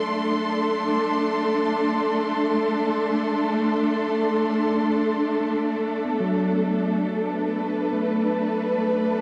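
Floating in free time, this melancholic, spacious ambient excerpt is built on a dark symphonic string section holding sustained, bowed chords up front, their ensemble sound expressive with vibrato and a smooth top, while a filter sweep shapes them throughout. Behind them, a bell-like tine electric piano fades in with bright, clean arpeggios carried on tape echo, sitting in the background. A lush hall reverb soaks the whole dreamy mix as the harmony moves from Am to Asus2 at 5.5 seconds.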